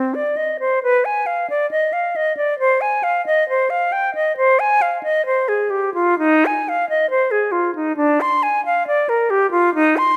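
A classical, baroque-style fantasia for unaccompanied flute, flowing and grave in a free rubato 4/4, this excerpt features a bright, airy concert flute soloing up front across its full 10.2 seconds, its soft attacks and expressive vibrato caught by close, detailed microphones within a moderate recital hall reverb.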